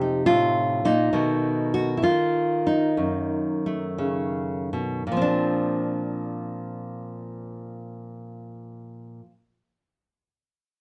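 Solo jazz in Bb major, swinging and playful, this brief excerpt features a fingerpicked nylon-string guitar with a full-bodied, fresh-stringed classical tone placed up front in moderate studio reverb, swinging its eighths at a slow 53-72 BPM that slows down over the first 5.1 seconds as F7sus4 moves to B7 before settling on a Bbadd9 at 5.1 seconds, the guitar playing until 9.3 seconds.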